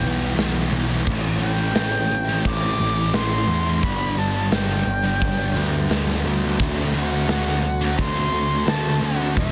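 A breathy, close-miked concert flute with vibrato sings its melody through analog delay over a growling, overdriven picked bass and a punchy gated 80s drum kit with bright cymbals, while a thick, dark fuzz guitar bathed in lush chorus and a background semi-hollow guitar with overdrive and reverse reverb play riffs through Em, Am7, G and D7 in this hazy, melancholic shoegaze and dream pop excerpt at 87 BPM, cut from a longer piece and given a dense, heavily limited modern master with little reverb.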